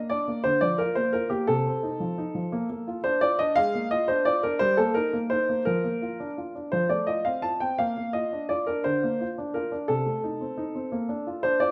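A cheerful, playful classical-period piano sonatina in Bb major, heard in a short excerpt that moves at a gentle 58 beats per minute in a lilting 6/8 with free, rubato phrasing. A warm baby grand piano plays alone throughout, open and up front, spanning from C3 to A5 as it moves through graceful inversions and a brief Cm6 before settling back on Bb at 10.9 seconds. A moderate recital hall reverb lends the performance a natural sense of space.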